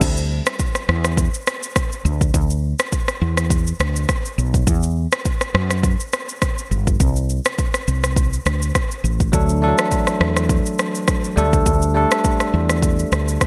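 Breezy and romantic, this afrobeats excerpt moves at 103 BPM in 4/4, with a gentle 16th-note swing giving it an easy, lilting sway. An electronic afro-pop drum kit sits up front with a deep kick, rim clicks, a shaker and crash cymbal, its tape-warm tone framed by gated reverb. A woody fretless electric bass plays from the start until 13.4 seconds, dark, round and punchy, with a hollow-body character heard direct and amped. A bell-like tine electric piano sounds at the opening and then returns at 9.3 seconds, bright and clean as it voices the harmony. The chords drift from Dsus2 through a rootless Bmadd11 and Esus2, pass through a chordless stretch, then settle on D and Gsus2/D, all set in light digital ambience with a bright 1980s-style production sheen.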